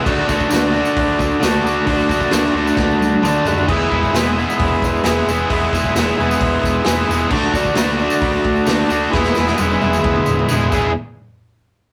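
A crunchy, overdriven electric guitar, double-tracked and pushed up front, drives this rowdy, swaggering garage rock excerpt with a bright, picked riff at 132 BPM in a straight 4/4. Behind it, a vintage, buzzy combo organ holds clean sustained chords in the background, breaking into short fills around 3.0 seconds and again near 10.0 seconds. A raw garage drum kit with a punchy kick, medium-tuned snare, dark cymbals, hi-hat and toms sits mid-forward with a rolled-off top, throwing in fills at 2.8 and 9.1 seconds. A picked electric bass with tube saturation adds a round, amped low end, while a jingly tambourine shakes quietly in the background. The harmony swings between D and E in E mixolydian, and the whole thing has the rough feel of a rehearsal room with a moderate splash of reverb.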